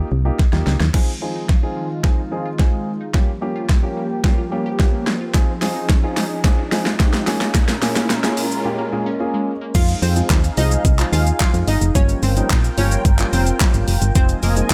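Dance-pop at 109 BPM in F minor, confident yet bittersweet, this cut from a longer piece builds over a dark, mellow baby grand piano, a smooth detuned analog pad and crystalline wavetable pluck arpeggios with dub echo, while overdriven pop drums with a knocking kick and fat snare sit up front and a very quiet riser enters at 4.5 s; after a short break, the punchy, round FM bass returns at 9.7 s beneath a glassy pluck melody for the drop, with sidechain pumping on the piano, bass, pad and plucks.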